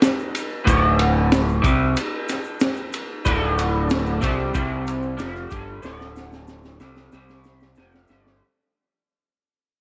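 A crunchy, punchy breakbeat drum kit with a high-tuned snare and a grainy egg shaker drives this dark, trippy psychedelic rock fragment, joined at 0.6 seconds by a twangy, lo-fi flanged electric guitar riff and at 0.7 seconds by a growling overdriven fingered bass, moving between D minor and C power chords. A very quiet, round tonewheel organ with slow rotary swirl enters at 3.2 seconds, and a drum fill arrives at 5.8 seconds as the whole piece fades out in a small room.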